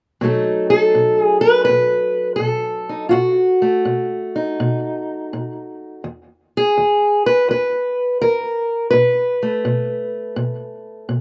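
This blues fragment has a swaggering, laid-back mood, moving at 83 BPM in 4/4 with a 67% swing on the eighth notes. A lone fingerpicked steel-string acoustic guitar carries the melody from 0.2 to 11.2 seconds, ranging from E2 up to B4. Its parlour-style tone is dark, woody and boxy, with the character of old strings, and it sits up front with a slapback echo. The harmony rests on B7, moves to an unharmonized stretch at 6.0 seconds, and settles on a B7 with the third omitted at 8.9 seconds. Recorded outdoors, the track has a light reverb and is cut from a longer piece.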